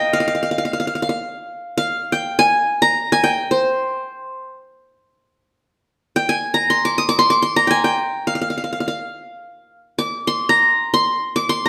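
A bright, up-front qanun rings through a wet stone room, its reverb lingering about 1.3 seconds around the plucked triple strings. This soulful, longing excerpt from a longer Turkish makam ensemble piece unfolds in free time in C makam ussak, with the qanun taking the solo from 0.0 to 11.7 seconds in a range from C5 to Eb6. The same phrase material returns at 5.8 seconds, and the edged, plectrum-struck tone carries the live feel of a band playing together in one room.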